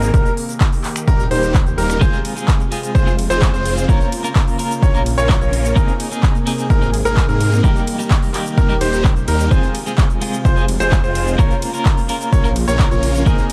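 A punchy, up-front electronic kick drum drives this emotional, euphoric stretch of festival progressive house, entering at 0.1 s and holding a straight 128 BPM in 4/4. Around it, a big-room dance kit adds crisp hats along with cabasa, finger snaps, handclaps and ride cymbal, while a detuned saw bass with a thick, mellow tone and chorus anchors the low end. A brilliant concert grand piano plays arpeggios with audible action noise and delay, and huge supersaw chords carry a riff through phaser and delay. A lush unison pad sustains chords with chorus in the background, and from 2.0 s a clean, picked electric guitar adds compressed accompaniment with tremolo and delay; the piano, supersaw, bass, pad and guitar each breathe with sidechain pumping. The harmony cycles through Eb, Fm, Bbm and Abadd9 in a dark, dry production tuned to A4 = 439 Hz, cut from a longer piece.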